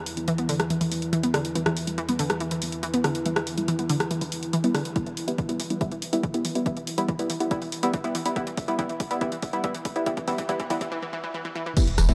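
Driving peak-time techno at 141 BPM in E minor, this dark build-up cut from a longer piece layers a moody detuned pad drone, tape-warm analog drum machine hits of crash, hi-hat, rim click and tambourine, a muted filter-swept dub chord stab and a bright detuned analog pluck riff, both pumping through tape echo and chorus, before a punchy up-front electronic kick joins at 5.0 seconds for a drum fill, a break arrives at 10.9 seconds, and a round overdriven sub bass lands at 11.9 seconds, all within a dark, huge ambient reverb.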